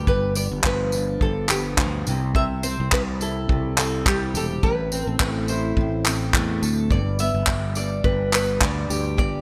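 A warm, full-bodied fingerpicked jumbo steel-string guitar, double-tracked, opens this carefree, heartfelt acoustic pop excerpt over a growly, punchy fretless electric bass, joined at 0.1 seconds by a bright nylon-string melody with audible finger squeak, lush chorus and delay, and an up-front brush kit with a tight kick, handclaps and tambourine in gated reverb, all set in a bright 1980s-style digital production with a lightly swung sixteenth-note feel as the chords move from G7 to C, Am and back to G.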